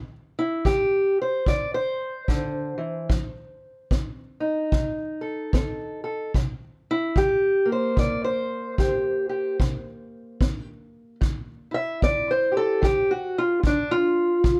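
Rollicking yet laid-back, this short excerpt of acoustic country blues swings easily in 4/4 as a fingerpicked steel-string parlour guitar, dark and boxy and sitting up front, carries the melody over chords moving from C through F7 and C7 to F5, while a punchy, roomy kick drum played with brushes, its top rolled off, joins at 0.7 seconds in a dry mix.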